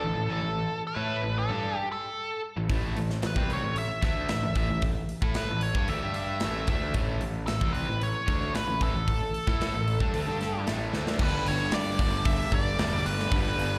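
Swaggering and powerful, this hard rock excerpt at 113 BPM pairs a nasal, parked-wah lead guitar with slapback echo and digital delay over a double-tracked, cranked stack guitar riff and a growly fuzz bass, while a tight, up-front metal drum kit with bright cymbals enters at 2.7 seconds and drops a fill at 10.9 seconds before the shift from A5 to G at 11.2 seconds, all heard as a live gig through the venue's PA with recital hall reverb.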